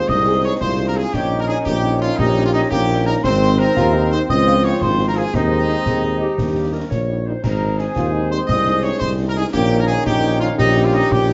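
An up-front, mellow tuba anchors the bass of this rousing, festive military-style march for wind band in 6/8, cut from a longer piece, while a clear trumpet section carries the melody. A hollow, wooden-toned piccolo with vibrato, a soft-attacked euphonium and a woodwind section set in the background all add second lines, and a very quiet, dark trombone section holds sustained chords beneath a warm French horn section that joins at 0.3 seconds. Concert snare drum, concert bass drum and clash cymbals with subdued cymbal tone sit behind the ensemble, and moderate large-studio reverb gives the rounded, top-shy production a sense of space.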